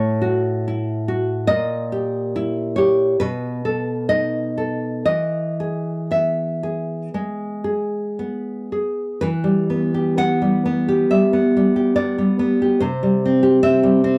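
A romantic solo classical guitar excerpt, sunny and nostalgic in mood, where a full-bodied, fingerpicked nylon-string guitar sits up front with free rubato timing, turns to a new passage at 9.2 seconds, and is captured in a dry, close 1970s-style studio recording with small room ambience.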